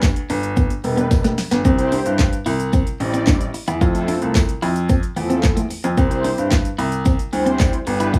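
This euphoric, carefree dance-pop excerpt opens with a deep house drum kit, mellow synth brass, a clear baby grand piano playing the bass line and a very quiet, jingly tambourine, moving in a straight 4/4 at 111 BPM in C major. A clean electric guitar enters at 0.3 seconds with a twangy, picked riff in its middle register, compressed and touched with subtle chorus. The up-front drums are overdriven and layered, with a deep kick, punchy snare, metallic hats, handclaps and shaker, and a drum fill runs from 1.1 to 1.7 seconds. The brass is round and dark, a detuned sawtooth sound with a filter sweep, chorus and sidechain pumping, while the polished piano bass pumps along in the same way. Underneath, the harmony moves from G to C, then to Fmaj7 and back to C, all inside light reverb with the rough feel of a home demo mix.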